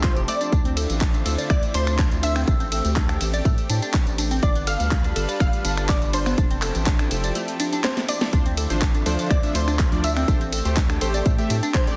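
A dense, heavily limited modern master with light reverb frames this driving, expansive progressive house excerpt at 123 BPM in a straight 4/4, set in D dorian and moving through Fmaj7, Dm7, Am7 and G7. An up-front, punchy electronic kick, tape-warm and re-recorded in a small room, anchors the groove, while a house drum kit with a cracking snare, handclaps, finger snaps, hi-hat, ride, and tambourine sits in a larger room, its hats, percussion and cymbals pumping against the kick. A round, deep analog bass pumps beneath a lush, thick unison pad holding sustained chords in the background, and a glassy, crystalline wavetable pluck spins bright arpeggios through chorus and dub echo. Further back, a detuned sawtooth unison pluck carries the melody with a filter sweep, joined an octave higher by a soft, pure FM bell playing a second line treated with chorus and phaser. After a drum fill from 7.8 to 8.3 seconds, a punchy supersaw stab enters at 8.3 seconds, its echoing hits filling out the final stretch.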